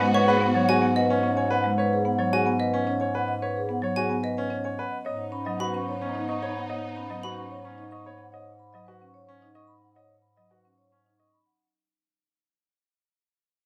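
A metallic, ringing vibraphone carries the melody in this meditative, hypnotic stretch of minimalist classical pattern music in triple metre, its dark, smooth tone shaded by a slow motor vibrato. Beneath it, a woody padauk-bar marimba supplies the accompaniment, while a brilliant concert grand piano and a dry, sharp xylophone with plastic mallets both spin arpeggios, the xylophone dropping out at 7.4 s. A rich, bowed studio string section adds soft-attack sustained chords with expressive vibrato, sounding briefly at the opening and returning around 5.1 s. A mellow, distant bass clarinet anchors the low end on G#2, and the passage opens on a G#m7 chord. Moderate large studio reverb surrounds the ensemble, and the music fades out steadily across this short section cut from a longer piece.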